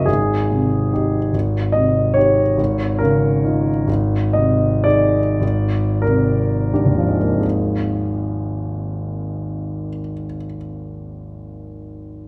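A clear, intimate grand piano plays alone, its long sustain and audible action noise placed up front in a wet recital hall reverb. This serene, impressionist classical fragment, cut from a longer piece, moves in a rubato 3/4 at 40-74 BPM in Ab major, slowing through its opening passage over colourful chords such as Abmaj7 and Bb13/Ab. A new section begins at 7.4 s on an Ab69 chord.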